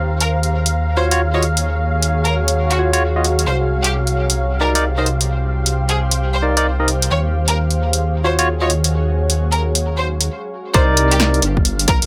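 A dark, detuned saw bass rumbles up front through this soulful, late-night UK garage excerpt in C minor, swinging at 132 BPM in a two-step feel while a punchy, tape-warm analog drum machine works hi-hat, rim click and snare. Barky tine electric piano stabs with delay, a pure, floating violin section carrying the melody through tape echo, a silky string machine with ensemble chorus and 12-bit grit, and a blurred granular cloud pad with sidechain pumping move over Ebm9 and Cm7 chords. After a stop at 10.3 seconds, the drop at 10.7 seconds brings in a tight, layered electronic kick under a Cm9 chord.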